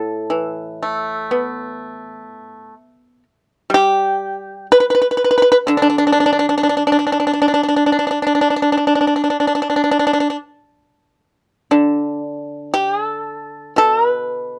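Pastoral and elegant, this short cut from a longer Chinese traditional piece features a solo pipa in the D zhi mode, moving freely in rubato around 54-64 BPM in 4/4. Plucked with fingerpicks, the pipa sounds percussive and up front, spanning A2 to B4 in a dry, close recording with a 1970s studio character. The opening section runs to 11.7 seconds before a new section carries the piece through to 14.6 seconds.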